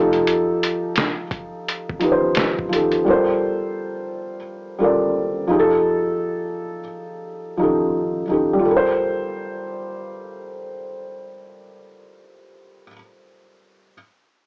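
A felt-muted upright piano, dark and intimate with audible action noise and a thick felt softness, carries this melancholic, hazy lo-fi hip hop fragment through swung F9 and Gm11 chords on worn, warbling cassette tape, while a muffled, pitched-down sampler drum kit with a thumpy kick and fat snare plays only until 3.0 seconds.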